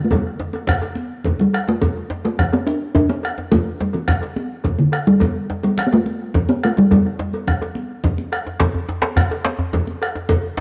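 A resonant talking drum carries the melody up front from the opening, coloured by cassette tape and tape echo, in this earthy, driving West African drum ensemble excerpt in 12/8. Beneath it sit a round, vintage-sounding bombo, high-tuned congas with a thick, damped skin, a metallic cowbell and a deep, close and dry djembe in the background. The talking drum drops out at 8.3 seconds, and at 8.6 seconds a second djembe joins up front, all captured as a home cassette recording with light studio reverb.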